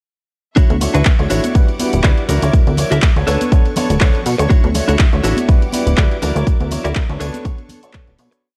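A four-on-the-floor kick at 122 BPM with a light 16th-note swing drives this sunny, funky filtered disco house piece, which drops in at 0.6 seconds with punchy, tape-tinged kicks up front, programmed claps, hats and shaker, and background tambourine and congas struck with hard hands, the hats and percussion pumping to the sidechain. A plucky, wave-folded analog bass carries a syncopated line with transformer saturation, a clean, direct-recorded electric guitar picks a compressed funk chord riff, a boxy grand piano with phaser adds dotted-rhythm rootless chords from 0.8 seconds, and a clear symphonic string section holds a bowed pad with light vibrato in the background, each of these pumping as well. The dry, gritty cassette sound cycles through Dmaj9, Em9, F#7b13/D and Bm9/D twice before fading out from 5.8 seconds.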